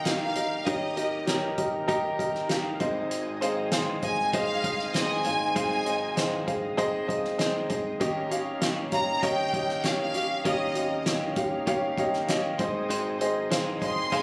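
A lush, bowed violin section with tape echo carries the uplifting, hopeful melody up front in this piano-driven pop excerpt, over a woody, slightly detuned upright piano with audible action noise, a clean, picked electric guitar riff tucked in the background, a very quiet gritty tonewheel organ holding sustained chords through a slow rotary speaker, and a soft-mallet drum kit with a fat snare and punchy kick, all heard as if caught on a phone in a club-like room.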